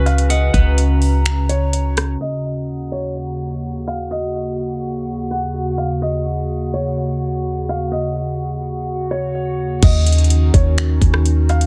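Atmospheric cloud-rap hip hop at 126 BPM in a floating, blissful half-time feel, where a warbling, nostalgic pad with chorus and sidechain pumping holds chords under a soft, felt-muted upright piano melody with audible action noise and tape echo, a dark clean electric guitar arpeggiates until 2.0 s, and a boomy sine 808 bass and a smooth R&B kit with knocking kick, metallic hats, snaps, rim clicks and a soft-clipped snare drop out for a filter sweep from 2.2 s before returning at 9.8 s.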